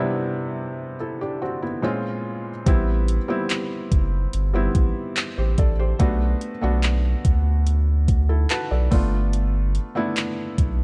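A straight 4/4 pulse at 72 BPM carries this sensual, longing contemporary R&B excerpt in A dorian. It opens with a soft, mellow felt-muted upright piano alone, its thin felt and audible action noise sitting intimately up front. At 2.7 s an electronic drum kit of knocking kick, metallic hi-hat and handclaps enters with a deep, thick, saturated sub bass, and the piano adds a fill from 8.1 to 9.3 s as the chords move from Cmaj7 through Am7 and Bm7 to G7, all within a dark, warm production bathed in digital ambience.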